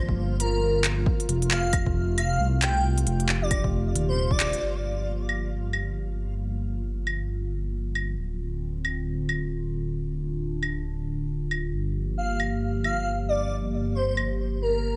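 A deep, rumbling detuned saw bass pumps beneath a warbling, lo-fi tape-like pad with chorus and pumping of its own in this nocturnal, melancholic future garage excerpt in G minor at 135 BPM with a swung 16th feel, where a punchy overdriven kick and a reversed, swelling background texture sit only in the opening section, a crisp organic electronic kit of claves, handclaps and hi-hat drives the groove from a large room, an airy, dreamy lead with vibrato, portamento and digital delay floats above before falling silent and returning at 12.2 seconds, and a filter sweep moves across the pad from 4.6 seconds.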